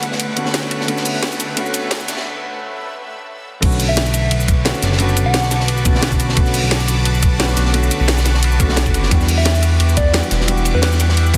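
A dense, heavily limited modern mix wrapped in light studio reverb opens this lush, melancholic slice of liquid drum and bass, cut from a longer piece and moving at 175 BPM in 4/4 in B minor. A felt-muted upright piano plays soft, mellow accompaniment through a digital delay, while a shimmering, ethereal pad holds sustained chords with a slow attack, detuned unison and an octave-up sparkle colored by chorus and phaser, pumping against the sidechain. Two kits drive the groove throughout: a crunchy breakbeat kit with a small-room, gritty character, dark cymbals and a high-tuned snare, and a produced drum and bass kit whose cracking snare, crash, hi-hat and shaker sit slightly louder. After a build-up with a break at 2.3 seconds, the drop lands at 3.6 seconds as a knocking, layered electronic kick and an up-front sawtooth-and-square synth bass with tube saturation come in. A round, keys-like FM lead with vintage warble, vibrato and cassette-tape tone drifts in for short melodic phrases through chorus and delay. 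The harmony rests on Bm7 before shifting to Em9 at 9.1 seconds.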